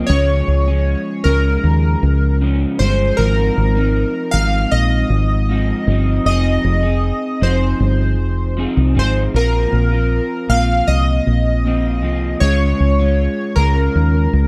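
Lonely and hazy, this short indie pop and bedroom pop excerpt drifts at 78 BPM in a straight 4/4, moving through Db, Ab6, Fm7 and Bbsus2 chords before returning to Db. Glossy, chorused retro synth keys carry the melody up front with a pulse-wave and sawtooth bite and a filter sweep, while an electric guitar through a small old amp adds twangy, slightly broken-up picked accompaniment colored with analog chorus and vibrato. A dark, foam-muted fingered bass enters at 0.1 seconds, round and direct, and the whole piece sits in light digital ambience with the soft grain of cassette tape.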